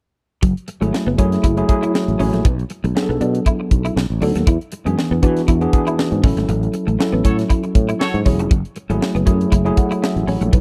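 A crisp fusion drum kit sits up front, its high-tuned snare and punchy kick ringing in an airy studio room as it drives this polished 1980s jazz-funk pop cut at 119 BPM in 4/4, with a 54% swing on the sixteenths. A sustaining fretless electric bass, bright and growly, runs alongside it from 0.4 seconds, while a clean, compressed electric guitar picks a riff through an ensemble chorus. A worn tine electric piano, slightly out of tune and lightly overdriven through its built-in speakers with a subtle chorus, joins at 0.8 seconds to carry the accompaniment. The harmony moves from F#m9 through Bm7, B7 and E7 to A6 before returning to F#m9, and a band accent lands between 6.5 and 8.5 seconds. Inside that accent, a mellow horn section with light vibrato and a soft attack adds a brief second line from 7.2 to 8.2 seconds, giving this dry, close, nocturnal urban excerpt a vintage touch.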